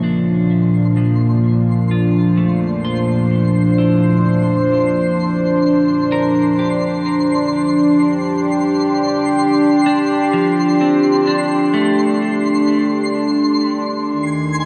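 An up-front, smooth sawtooth pad with a sub octave holds sustained chords through this luminous, serene ambient excerpt, while a dark, clean picked electric guitar fades in with arpeggios soaked in lush chorus, tape echo and shimmer reverb until it stops at 13.7 s, and a twinkling, bright FM granular texture fades in high above, all set in a wet cathedral reverb.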